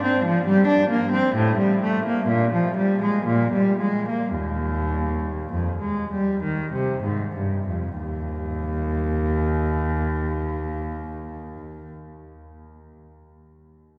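A single bowed cello with a nasal, reedy gut-string tone carries this baroque-style suite movement, played by one performer in period style across a range from Eb2 to D4. The mood is serene yet dance-like, in 3/4 and Eb major, with a rubato feel that drifts between 47 and 68 BPM. Over the first 8.0 seconds the pace slows, and then a contrasting second section begins and runs until 11.6 seconds, with the cello sounding until 11.9 seconds. The instrument sits up front, though its tone also has a distant quality, set inside a vast cathedral space whose reverb lingers for 5.8 seconds. The top end is capped, with nothing above 10.7 kHz, and the clip is a brief cut from a longer piece.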